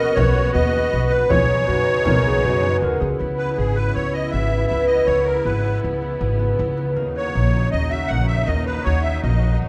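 A reedy musette accordion leads this restless, hypnotic chamber excerpt in 5/4, carrying the melody over a veiled, con sordino string section holding bowed chords and a concert harp ringing out fingerpicked arpeggios. A smooth-topped, classical clarinet plays a dark second line beneath the shimmering accordion until 3.2 seconds. A woody pizzicato upright bass sits up front, and a deep frame drum, struck with hard hands, stays in the background until 2.9 seconds. The harmony moves from G#m9/B to C#m7 and then to D#m7 at 7.0 seconds. A recital hall reverb gives the acoustic ensemble a wet, spacious sound.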